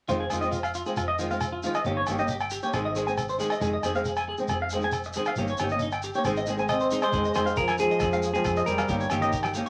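Bittersweet and warm, this highlife guitar band fragment opens with an up-front fingerpicked flamenco guitar, twangy picked arpeggios on clean electric guitar, a punchy foam-muted fingered bass, grainy shekere and ringing agogo bells. A dark semi-hollow electric guitar melody and a clear jazz-style trombone line with light vibrato join at 6.7 seconds, followed at 7.1 seconds by a dry, damped 70s drum kit in the background, all set in a moderate studio reverb with vinyl crackle over a cycling Fm7, Eb7/G and Ab progression.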